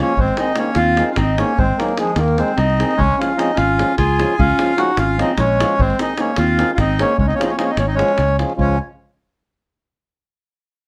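Balkan folk in the manner of a wedding band, this short excerpt from a longer piece bursts with exuberant, festive energy in a driving 7/8 metre. A reedy, full and dark accordion carries the melody up front, its dry tuning paired with a smooth tone. Beneath it a warm clarinet in classical style adds a second line, while a mellow, round accordion with a single-reed tone fills out the accompaniment. Just after the start, at 0.2 seconds, a fingered electric bass enters with a direct, amped sound placed forward in the mix, joined by a deep acoustic davul that sounds as if played in a small room. The harmony swings between Ab and Db, and a moderate studio reverb gives the ensemble a lively, cohesive space.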